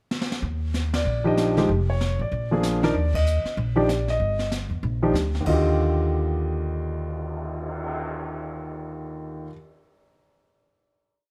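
A brushed drum fill opens this short, warm and sophisticated jazz piano trio piece at a brisk swing, as the woody pizzicato upright bass settles into a two-feel and an intimate, up-front concert grand with audible action noise and plate reverb states a bebop-style theme over syncopated drop2 comping, with dark cymbals and snare sweeps underneath, band accents at 0.9 and 3.1 seconds, and a long-sustained final chord from 5.5 seconds.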